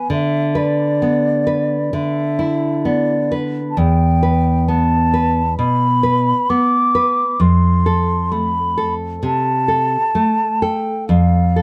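A nylon-string guitar and a concert flute begin together in this brief passage from a romantic duo, the guitar fingerpicking full-bodied, up-front accompaniment beneath the flute's pure, hollow melody with vibrato and a soft attack. The mood is solemn and melancholic, with a rubato feel as the harmony moves from E over D to E minor and then F before the chords drop away at 11.1 seconds. Close, detailed microphones and light reverb give the duo a clear, detailed sound.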